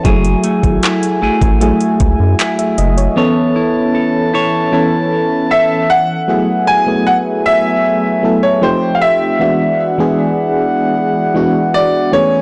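A moody, sensual contemporary R&B excerpt opens with a warbling FM electric piano with tremolo, mellow sustained brass chords, a twangy electric guitar picking delayed arpeggios, a produced drum kit with knocking kick, metallic hats and handclaps, and a rubbery, tube-saturated square bass, before the drums and bass fall away by 3.2 s, a brilliant, worn grand piano carries a delayed melody from 5.5 s and the guitar drops out at 6.9 s, set in a blown-out, overdriven mix with light reverb and a dull top end.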